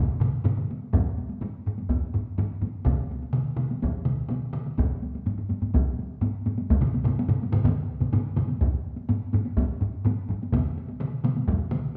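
A straight, driving 4/4 pulse carries this ceremonial Japanese traditional taiko drum performance, cut from a longer piece, in which four acoustic taiko parts played live in one room strike, three with hard sticks and one with heavy sticks, sounding close and up front, one notably dry and two set in a small room, all bathed in a large studio's wet reverb, with one part dropping out at 10.4 s while the others carry on until roughly 11.6 to 11.8 s.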